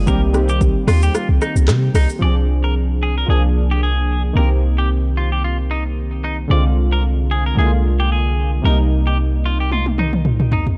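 A deep, boomy 808-style bass with a sine tone and a noise layer anchors this mellow, smooth afrobeats clip at 112 BPM in C minor, with a light 16th-note swing, as chorused, detuned sawtooth analog keys and a bright, twangy, clean electric guitar melody with lush chorus and digital delay drift over a Cm7, Dm7b5/C and Bb7/C progression. The overdriven deep house kit, with metallic hats, handclaps, rim clicks, shaker and toms gritty from a vintage 12-bit sampler, plays through the opening section, drops its kick at 1.1 seconds, falls away at 2.2 seconds, and returns with a fill at 9.7 seconds. The production is dark and dry.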